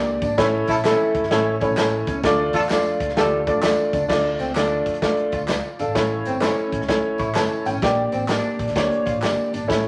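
A swung 129 BPM groove in 4/4 drives this passionate excerpt of uptempo 1960s-style soul in D harmonic minor, where a woody, slightly detuned upright piano sits up front over a round, foam-muted electric bass and a small-room drum kit with a tight kick, while a slightly broken-up guitar riff carries harmonic tremolo in the background beside tambourine and group handclaps, a warm horn section with light vibrato plays a second line from 0.7 to 3.5 seconds, the piano adds a fill at 6.9 seconds, and a club reverb, vinyl crackle and faint mains hum colour the sound.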